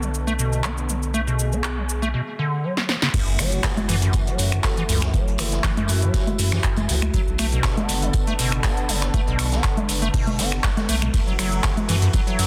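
This gritty, driving acid house passage opens with a squelchy, resonant square-wave acid bass riff, a deep round analog bass and a thick, detuned pad on sustained chords, all three pumping under sidechain, alongside a punchy electro drum machine with metallic hats; a drum fill then drops at 3.1 seconds into an overdriven electronic kick, a distant brushed kit and a very quiet impact, while a ringing vibraphone melody sits in the background from 4.6 to 7.2 seconds.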